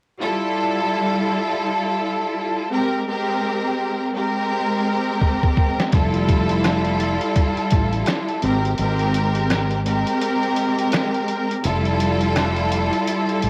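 Swung sixteenths at 84 BPM in 4/4 give this soulful boom-bap hip-hop fragment its unhurried lean, though the groove only arrives after a drum fill at 5.2 seconds. From the opening, a lush, smooth string section carries the harmony with bowed vibrato, alternating between Fmaj9 and Abmaj9 chords in a slightly flat tuning. The trip-hop sampler-style kit is compressed, pitched down and muffled, with a thumpy kick, a medium-tuned snare, rim clicks and hi-hat. A dark, round fretless electric bass joins at 5.9 seconds, sitting low beneath the strings. The kick drops out at 8.8 seconds and stays muted through the short closing section, which returns to Fmaj9. Spring reverb, a cassette tape effect on the strings and drums, and vinyl crackle give the whole cut a homemade, worn character.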